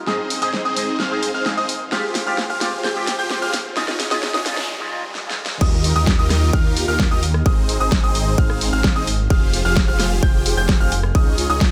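Huge, detuned supersaw chords with phaser and sidechain pumping carry the riff through this uplifting, triumphant festival progressive house excerpt, joined by a brilliant, worn baby grand piano playing high arpeggios and a twangy, clean envelope-filtered guitar that stops at 5.5 seconds. A pop drum kit with a fat snare drives the build-up with drum fills and a faint riser and noise sweep into a short break. At 5.6 seconds the drop hits with a punchy, overdriven electronic kick up front and a thick, saturated detuned saw bass, all set in a lush hall reverb.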